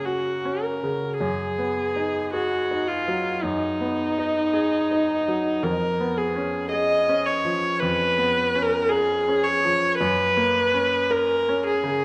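In a flexible, rubato 4/4, this tender, lyrical fragment of a romantic classical duo sets a single warm, smoothly bowed viola up front, its even melody carried on vibrato, over a brilliant yet worn grand piano accompaniment with a deep bass and a present sound, all held in a moderate concert hall reverb.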